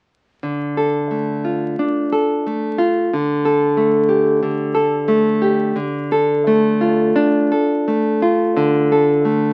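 Romantic solo classical guitar, melancholic and passionate, heard in a short excerpt where a fingerpicked nylon-string guitar sounds up front from 0.4 to 9.5 seconds with a full-bodied, deep tone and the warmth of fresh strings. The playing moves with a free rubato feel, shifting from a minor chord to a suspended chord and back. A moderate studio reverb surrounds the guitar, and the whole is coloured by the crackle of a very old 78 rpm record.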